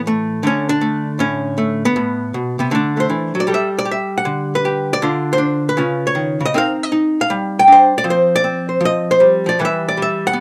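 A solo archtop guitar, electric and miked through its amplifier, opens this short, warm, swinging jazz fragment at 157 BPM. Its dark, clean, picked hollow-body tone sits compressed and up front in light reverb under close, detailed microphones as it moves through Am and D7 into a Gmaj9 at 3.5 seconds, then on through Dm7, C#9, Cm7 and Fsus2 to an Em7, spanning A2 to G5.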